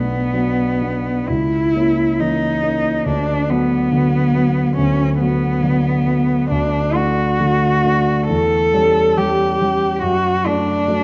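A rich, bowed cello sings an expressive melody with vibrato and portamento over a polished grand piano accompaniment from the start, in an elegiac, melancholic romantic classical fragment in B minor at 69 BPM in 4/4 with a rubato feel, the two instruments up front in a dark, warm production with a wet scoring-stage reverb as the harmony moves from Bm through D toward D/F# by 10.0 seconds.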